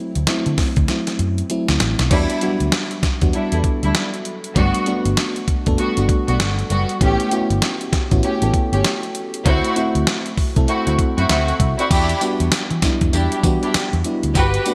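A chorused, tremolo-laden FM electric piano with a soft pad layer opens this punchy, confident slice of new jack swing R&B, its lush, dreamy tone sitting on a D9 chord. A fraction of a second later a dusty soul sampler-style drum kit and a vintage muted fingered electric bass join. The kit is gritty and up front, with a thumpy kick, fat snare, hi-hat, tambourine and crash cymbal all bathed in gated reverb, and a drum fill runs from 0.9 to 2.1 seconds. The dark, foam-muted bass is round and amped, anchoring a swung sixteenth-note groove. At 2.1 seconds a studio string section enters with expressive, vibrato-rich bowed stabs that sit forward in the mix as the harmony moves through Em7, Gmaj7, A7 and D9 before returning to Em7. A moderate plate reverb and bright 1980s-style digital production give this fragment of a longer piece its glossy sheen.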